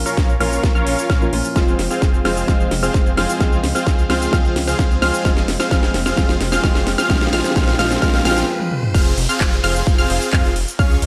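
A straight 4/4 pulse at 130 BPM drives this powerful, emotional festival progressive house excerpt in F minor, where a punchy, up-front electronic kick and a tape-warm house kit with cracking snare, metallic hats, handclaps, cabasa, toms, ride and crash play a fill through the build-up; meanwhile huge, bright supersaw chords carry the riff under a low-pass filter sweep, an intimate baby grand piano with audible action noise, 12-bit sampler grit and dub echo accompanies until 9.0 s, a thick, chorused detuned saw bass pumps with sidechain, a decaying unison pluck arpeggio sits in the background, and very quiet risers and downlifters enter at 5.0 s before a brief stop gives way to the drop at 8.9 s.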